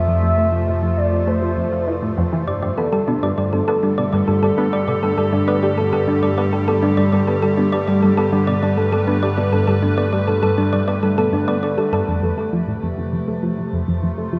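A luminous, cosmic, echo-heavy wash of plate reverb opens this 100 BPM excerpt of ambient, sequencer-driven space music in 4/4, where an evolving wavetable pad holds bright chords over a vintage, warbling analog drone while a tight, driving sequenced synth riff with phaser runs throughout, a dark portamento lead sings briefly with vibrato until 2.1 seconds, and a round, tine-like thumb-piano-like pluck sits up front with arpeggios from 2.5 seconds as the harmony moves from F to Gsus2 and back to F.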